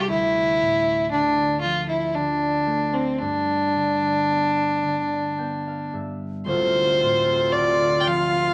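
A dark, woody fiddle carries the melody from the opening moment, bowed by a single player with light vibrato, set up front yet sounding slightly distant. Beneath it, a concert harp rings out mellow, thumb-plucked accompaniment across a deep range, adding a fill at 4.8 seconds. This short fragment of a Celtic slow air moves in a free, rubato three-time, its longing, mournful mood shaped by harmony that shifts from Dmadd9 to G and settles on Dm7. At 6.5 seconds a new section begins as a baroque flute enters with a pure, crisp-edged second line, close-miked and expressive with its own vibrato, while a hand-pumped harmonium breathes reedy, nasal sustained chords in the background. Light reverb gives the whole a small-room intimacy.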